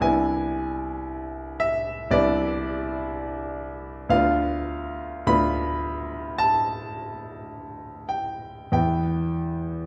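A clear, smooth grand piano with a vintage character and short sustain sits up front in this yearning, mournful romantic nocturne, played alone in 4/4 with a rubato feel at roughly 43-61 BPM. Its harmony moves from E7/C at the opening to Bdim/D at 4.1 seconds and settles on E5 at 8.7 seconds, spanning C2 to B5. A dark production and the reverb of a recital hall surround this short section cut from a longer piece.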